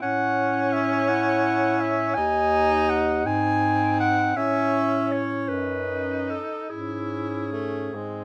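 From the first moment, a single-reed quartet sounds together in a slow, elegiac classical piece in C# minor, cut from a longer work and lasting 8.2 seconds. It moves in a rubato 6/8 at around 47-56 BPM, counted in dotted quarters, with a solemn, lyrical character. A clear clarinet carries the melody up front, ranging from G#4 to G#5, while a close-miked alto saxophone traces a second line from B#3 to E4. A warm tenor saxophone with vibrato and a soft attack fills in the accompaniment with a roomy presence, and a dark bass clarinet, also soft in attack, anchors the bottom from D#2 to A2. The harmony moves from A through D#madd11, G#, A and B9/F# before settling on C#m/G#, and a light reverb gives the ensemble a gentle sense of space.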